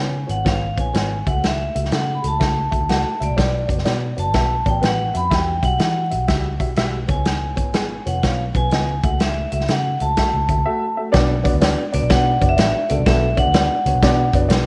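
A swung 4/4 groove drives this passionate, uptempo 1960s-style soul excerpt, with a natural, up-front acoustic drum kit (punchy kick, medium-tuned snare, hi-hat) entering at 0.3 seconds beneath a round, foam-muted picked electric bass. A ringing, metallic vibraphone struck with hard mallets carries the melody, while a dark, woody upright piano, slightly detuned and worn with audible action noise, supplies intimate accompaniment and a brief fill from 10.4 to 11.1 seconds, just before the second section begins. A moderate echo chamber reverb and small room ambience frame the band, with vinyl crackle adding a vintage patina.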